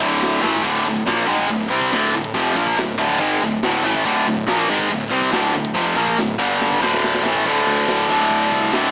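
A double-tracked, high-gain guitar riff drives this dark, relentless heavy metal excerpt at 141 BPM in D minor. It sits up front over a growly picked electric bass and a tight kit of kick, medium-tuned snare, toms, china and crash cymbals in the background, with drum fills at 0.4 seconds and from 6.6 seconds, a move to G5 at 6.4 seconds, and a blown-out, overdriven small-speaker sound touched with light reverb.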